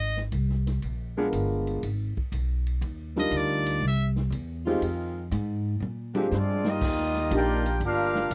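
Big band swing with a brassy, energetic mood, this dry, close studio fragment opens with a buzzy, metal-muted trumpet carrying the melody with scooped notes and light vibrato over woody pizzicato upright bass and a swinging kit with a punchy kick. A dark grand piano with audible action noise accompanies, and a mellow saxophone section adds sustained chords, mainly from 4.7 seconds, before a drum fill at 5.8 seconds. At 6.3 seconds a warm trumpet section takes up the melody, with a trombone section playing a second line beneath it.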